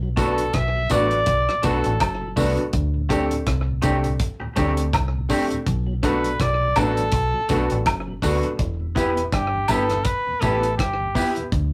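A swung sixteenth-note roots reggae groove from a dry, tight-kicked drum kit with slapback echo on hi-hat, kick and rim click, close tambourine and woodblock, and a dark, round, foam-muted dub bass up front drives this meditative, hypnotic excerpt, while a clear, punchy flugelhorn carries the melody with light vibrato over twangy, slightly broken-up electric guitar with its own slapback echo, woody upright piano stabs with audible action noise, and a very quiet, mellow tonewheel organ through a slow rotary speaker, set in a rough, saturated rehearsal-room sound with a wet small-room reverb.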